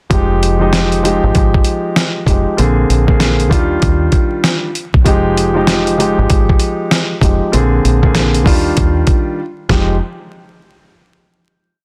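Tough and reflective, this short boom-bap hip-hop piece in F dorian rides a swung 97 BPM groove, with a gritty, compressed sampler-style drum kit pounding out a thumpy kick and fat backbeat snare, a round, foam-muted fingered electric bass looping a deep line with slides, and a dark, mellow grand piano with audible action noise chopping Fm9, Bb9 and Ebmaj9 chords like a sampled loop, all under vinyl crackle and a dense modern master until a break at 9.4 seconds leads to a final hit at 10.0 seconds.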